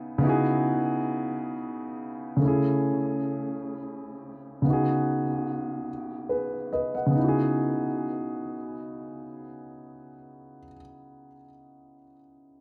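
A dark, mellow grand piano plays alone with a vintage, intimate character, up front with audible action noise and a touch of digital delay, in this yearning, late-night R&B fragment in a straight 6/8 that moves from C#m11 through Amaj7/C# and G#m7/C# back to C#m11, slowing down between 2.4 and 7.2 seconds, within a moderate echo-chamber reverb, a small-room ambience and a shadowy, warm production.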